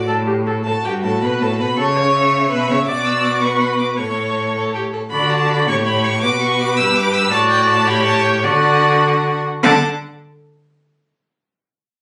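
Captured on a phone in the room and given light studio reverb and compression, this spirited, lively classical-period string quartet movement in 6/8 moves with a flexible rubato feel. The first violin carries the melody high above with a rich, expressive tone, vibrato and portamento, while the second violin's line and the viola's accompaniment sit smooth, even and distant behind it. Up front, the bowed cello anchors the bass with a clear, focused sound.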